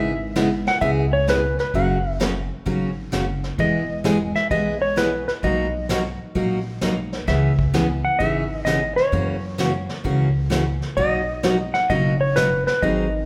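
A dark, clean lap steel guitar opens this playful western swing fragment, carrying the melody up front with a fingered slide touch. Alongside it, a bright picked acoustic guitar with fresh strings gives full-bodied, up-front accompaniment, while a woody pizzicato upright bass anchors the low end. A vintage brush drum kit enters at 0.4 seconds, its brushed snare, hi-hat, punchy kick and medium-tuned snare sitting quietly in the mix with a warm, rolled-off top. The swung eighth notes give this country groove a swinging lilt as the harmony moves through minor seventh, dominant and major seventh chords. The band plays live in one large studio, and a moderate reverb lends a roomy glow before the acoustic guitar drops out at 13.1 seconds.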